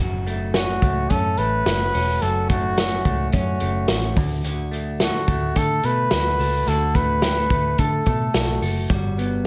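Lightly reverberant and close, this brief cut from a longer piece of jangly indie pop carries a youthful, nostalgic mood over a straight 4/4 feel, moving from F#m to D6 and touching Gmaj7 near the end. A bright, twangy electric guitar through a small old amp plays slightly broken-up picked arpeggios, while a dark, round, foam-muted electric bass and an up-front vintage drum kit with a punchy kick, medium-tuned snare, hi-hat and a rolled-off top fill out the studio room. From 0.6 to 8.6 seconds a cup-muted trumpet carries the melody, veiled, breathy and intimate, with a slapback echo.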